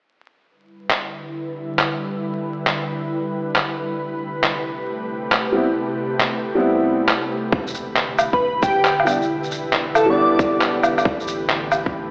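A swung 4/4 groove at 136 BPM sets this ghostly, rainy future garage excerpt in motion, with muffled, pitched-down sampler handclaps, shaker and woodblock sitting up front from 0.9 seconds. An ethereal, detuned pad sustains Em7 and Am9 chords beneath them, its slow attack and long release softened by ensemble chorus and built-in reverb, pumping against the sidechain while a filter sweep moves across it through the opening section. A woody upright piano enters at 5.5 seconds with tape echo, and at 7.5 seconds the second section brings in a tight, overdriven kick that sounds re-recorded in a large room, along with a deep, round dub sub bass kept in the background. A dreamy sine lead with a noise layer, a moving notch, chorus and analog delay sings a brief line between 8.3 and 10.4 seconds. The whole mix sits in a huge ambient reverb and stone-room reverb, played back through a big sound system, and is coloured by vinyl crackle and an AM radio sound.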